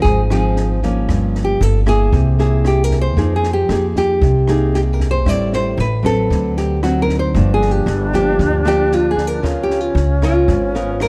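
Intimate and melancholic, this bossa nova fragment, cut from a longer piece, moves in a straight 4/4 feel. A fingerpicked nylon-string guitar carries the melody up front with a deep classical tone, while a second fingerpicked nylon-string guitar supplies the accompaniment beneath it. A woody pizzicato upright bass on steel strings sits close in the mix, and a compact cocktail drum kit adds a dry, natural pulse of punchy kick drum, rim click and a high-tuned snare. At 7.3 seconds a bright wooden-headed alto flute joins with an airy, expressive second line, its crisp attack and vibrato lending color to the closing bars. The harmony drifts through rich chords such as Dbmaj9, C7b13, Fm11 and D7b9 before settling on Db6, all framed by light reverb and a dark, warm production.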